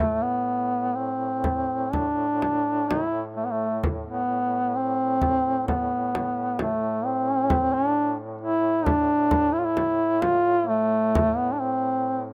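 A mellow duduk sings a longing, mournful Caucasian lament in A minor, up front with vibrato, scooped notes and a smooth top, over a second duduk's soft-attacked, distant and roomy drone on A2 and a deep, close, dry frame drum struck with hard hands, drifting in a rubato 4/4 around 65 BPM with light reverb in a rough home demo mix, the drum stopping at 11.4 seconds before the duduks close this fragment of a longer piece at 12.3 seconds.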